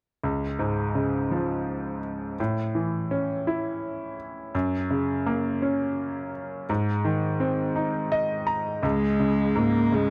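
A bright grand piano opens this short excerpt at 0.2 seconds, playing a tender, romantic pop accompaniment in 6/8 that spans from deep bass notes to sparkling high ones. Its tone is brilliant and intimate, with the mechanical action of the instrument audible close at hand. The harmony moves through Db, A, Gb and Ab, and the piano plays a fill starting at 7.8 seconds that leads into a new section. At 8.9 seconds a single bowed cello enters with a narrow, singing melody, its sound warm and focused, with vibrato and a smooth top. Both instruments sit up front in a dry, close 1970s-style studio recording touched by light reverb, and the clip ends just as the cello line begins.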